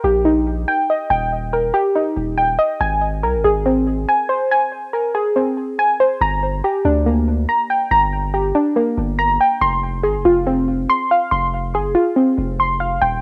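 A detuned sawtooth pluck and a deep, sustained 808-style bass open this dark, cold drill piece together, cut from a longer hip hop track at 141 BPM with a half-time feel in G phrygian. The pluck sits up front, playing arpeggios from Bb3 to C6, its dusty, warbling tone shaped by chorus, a low-pass filter with a sweep, cassette tape character and tape echo. Beneath it, the sine-like bass holds long notes between Eb1 and D2, each with a fast attack that then decays, sitting lower in the mix than the pluck. The harmony moves from Eb to Abadd9, then shifts at 6.2 seconds into a second section built on Gm and Fm. Light reverb and the lo-fi character of a home cassette recording give the whole 13.2 seconds an intimate, worn atmosphere.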